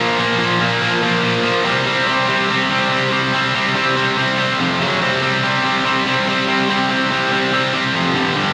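Heard live through a venue's PA with a light recital-hall reverb, this swaggering, raunchy rock fragment features a lone sludgy, bright, double-tracked electric guitar, overdriven and picked up front with slapback and tape echo, churning through Bb5, C5, F5, F#5 and G5 power chords across its 8.5 seconds.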